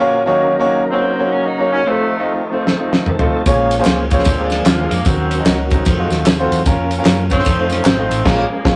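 An uptempo gospel excerpt in a swung 4/4 opens with a bright, vintage saxophone section carrying the melody over clear, up-front grand piano and a gritty, overdriven tonewheel organ holding sustained chords in the background through a fast rotary speaker and chorus vibrato. The organ adds fills at the start and again around 2.9 seconds, while a soul drum kit enters at 2.7 seconds with a fill, bringing a fat snare, tight kick and dark cymbals. At 3.5 seconds a round, punchy hollow-body electric bass arrives alongside tambourine, egg shaker and group handclaps set back in the mix. The harmony moves through minor sevenths and dominant chords, including an F7b9, lending the soulful groove a solemn weight. The whole band hits an accent at 8.2 seconds, and the rough rehearsal-room sound, with its small-room ambience and tube saturation, keeps the performance close and raw.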